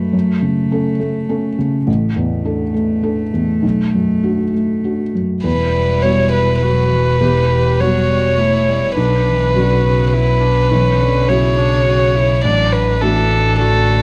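A felt-muted upright piano, soft and intimate with audible action noise, opens this reflective, longing neoclassical piece in B minor, alongside a pure, nasal cello that plays a floating second line in the background with slapback echo. At 5.4 seconds a dark, sul tasto violin takes the melody up front with light vibrato and its own slapback echo, joined by an airy-bowed viola set back in the mix and a woody, bowed double bass carrying the bass line. The music moves in a rubato 3/4 at 103 BPM through chords from F#m and Bm7 to Emadd9 and D/A, captured by close, detailed microphones in light reverb.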